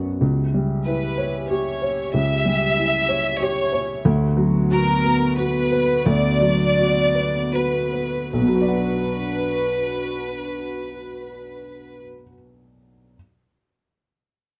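In a rubato 3/4 that drifts between 74 and 94 BPM and slows from 3.1 to 8.3 seconds, this fragile, longing neoclassical piece in B minor is cut from a longer work and carried by a dark, boxy baby grand piano playing intimate accompaniment with audible action noise and short sustain. A chamber violin section enters at 0.8 seconds with a close, up-front melody, bowed sul tasto with soft attack and light vibrato. A hollow, flute-like pad with chorus holds slow-attack sustained chords in the background until 12.0 seconds, and the moderate reverb gives the whole a dark, warm production.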